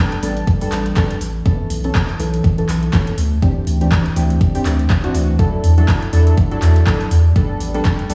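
Detuned analog key stabs, built from pulse and sawtooth waves with an evolving filter sweep, lead this smooth, warm deep house clip from the first moment, moving through A9sus4, B9sus4, D9sus4 and E9sus4 chords in E minor. The stabs carry chorus, dub echo and sidechain pumping, and their fast attack and decaying tail sit up front in the mix. A round, nasal bass with a dark, sustained sine-and-triangle tone joins at 0.2 seconds and pumps with the sidechain. An overdriven electronic kick arrives at 0.5 seconds, deep and prominent, while a layered drum kit of handclaps and metallic hi-hats, also driven and re-recorded in a large room, sits further back. The groove runs at 122 BPM in 4/4 with a loose 16th-note swing. Vinyl crackle, large studio reverb and the feel of a big sound system playing in a bare room give the cut from a longer piece a hazy, club-like atmosphere.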